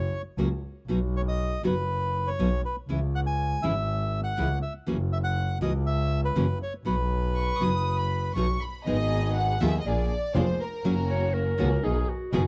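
This is a dry, close recording in a 1970s studio manner, with a small room around the players. It is a passionate, playful tango at 121 BPM in 4/4, taken with a rubato feel and cut from a longer piece; it moves from B major into G# minor at 8.9 s. A reedy, dark bandoneon carries the melody up front, over an earthy bowed double bass with light vibrato and a bright, full-bodied fingerpicked nylon-string guitar with audible finger squeak. A violin section with a gut-string, period-style tone enters at 7.4 s as a second line and takes a solo from 8.9 s, while a muted string section adds veiled, con sordino stabs. Near the close a clear, classical-style clarinet joins with its own second line.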